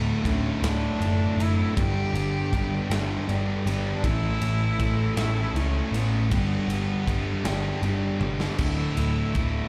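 In a slow, straight 6/8 sway, this cathartic, bittersweet quiet-loud alternative rock passage, cut from a longer piece and heard as a live club gig through the venue's PA, sets a distant, nasal bowed cello melody with smooth vibrato over two thick, distorted fuzz guitar riffs in the background, one dark and one warm, both carrying slapback echo like the cello, while a growly, overdriven picked bass sits up front and a big acoustic rock kit with bright cymbals, a punchy kick and a medium-tuned snare enters at 0.3 seconds and drives through a drum fill at 8.2 seconds across chords moving from Dadd9 through G and A to Dsus2.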